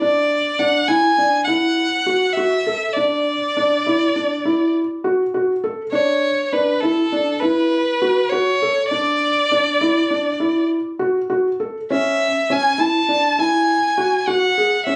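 Captured on a phone in a studio room with light reverb and compression, this restless, pensive contemporary instrumental fragment moves at 101 BPM in a straight 5/4, set in B dorian. A felt-muted upright piano plays soft, intimate arpeggios between C#4 and A4, its action noise audible up close, while a single bowed violin carries the melody from A4 to A5 with a rich, focused, slightly boxy tone and vibrato. Both parts sit up front throughout the 15 seconds, with the harmony resting on a rootless Bm before shifting to C#m at 11.9 seconds.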